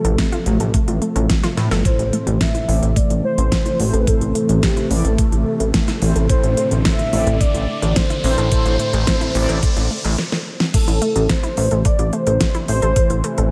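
A glossy, up-front chorused synth bass with sidechain pumping drives this moody, nocturnal synthwave excerpt, joined by a knocking electronic kick, a pop drum kit with fat snare, crisp hats and gated reverb, a velvety synth lead with vibrato and tape echo, a smooth sawtooth analog pad, lush detuned pluck arpeggios through digital delay, bold brassy synth stabs entering at 1.9 s, and an electronic riser running from 4.3 s to 10.2 s, where the band briefly stops.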